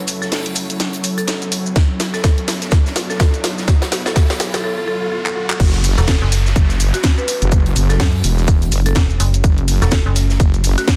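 A tight, up-front electronic kick drives this aggressive, swaggering bass house excerpt at 125 BPM in F# minor, its 16ths swung, landing at 1.8 seconds and holding through the end. Beneath it, a layered garage kit brings a cracking snare, bright high-passed hats, handclaps, shaker and crash, while a big-room acoustic kit with a fat snare sits in the background, its hats and percussion pumping to the sidechain. A dark, woody marimba carries the melody through a delay from the start, over a deep, moody sawtooth pad with chorus, reverb and sidechain pumping, and an ethereal, airy pad that drops away at 4.6 seconds. Background risers and downlifters push through a build-up with drum fills and a brief break until the drop at 5.6 seconds, where a heavy, saturated wobble bass arrives up front, joined moments later by a metallic, overdriven FM bass. The dense, heavily limited master carries light small-room ambience.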